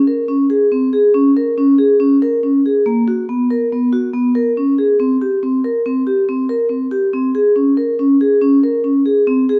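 A solo vibraphone played with medium mallets and its motor off opens this pensive, hypnotic contemporary instrumental fragment, ringing metallic and up front from about 0.1 to 9.6 seconds in a boxy small room with light reverb, moving between Bb3 and Bb4 in Bb dorian at 140 BPM in a straight 5/4, tuned to A4 = 439 Hz.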